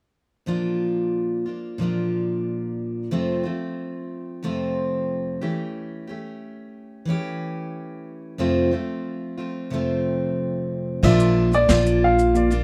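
Sunny and carefree, this short excerpt of acoustic pop at 91 BPM opens with a dark, full-bodied picked jumbo steel-string guitar moving through Bb, F, A7/E and F before, at 11.0 seconds, a polished, present upright piano melody arrives over very quiet, short-sustained piano chords, a growly, woody pizzicato upright bass, and a vintage brush kit with a punchy kick, dark cymbals, snare and shaker, all under light reverb.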